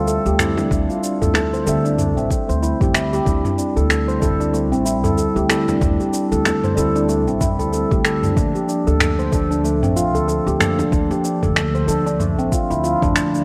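Organic downtempo in D minor at 94 BPM with a 16th-note swing, this earthy, warm excerpt pairs up-front ringing handpan arpeggios with a mellow tine electric piano that pumps under sidechain and sweeps through a low-pass filter with delay, over a woody pizzicato upright bass, a soft tape-warm electronic kick, a small-room organic electronic kit of cabasa, finger snaps and toms, and a close, dry frame drum that surfaces at 0.6, 5.7 and 10.8 seconds, all bathed in a lush hall reverb and the warbling pitch drift of worn cassette tape as the chords move from D7(no3) to Am to a rootless Gmadd9.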